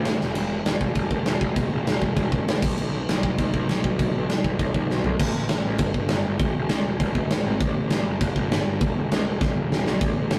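This rough rehearsal-room recording sits in a moderate studio reverb that gives the short punk rock fragment a raw, live edge. A picked electric bass, overdriven and thick with fuzz, growls up front in a low register from the very start, and its tone stays bright and direct. A big acoustic rock drum kit joins at 0.1 seconds, with a punchy kick, a medium-tuned snare, toms, and bright crash and splash cymbals over an otherwise dark, smooth room sound. The energy is rowdy and driving in a straight four-beat feel, and the piece shifts into a second section at 5.2 seconds. Drum fills mark the opening moment, the approach to that change, and a final burst between 9.4 and 10.0 seconds before the cut.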